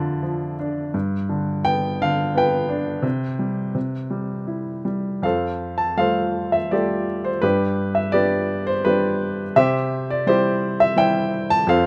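The rhythm moves in an unhurried three-beat lilt, stretched and relaxed with rubato phrasing. This is a short, lyrical classical passage for solo piano, cut from a longer piece, with a hopeful, relaxed mood. A baby grand carries everything alone from start to finish, its tone warm and natural, with short sustain and an up-front presence across a span from F2 to A5. The harmony drifts through gentle chords such as Bb/F, G and C before settling onto Fadd9 at 5.2 seconds, where a second section begins and continues to 11.9 seconds. Close, detailed microphones and a light touch of reverb keep the sound intimate and clear.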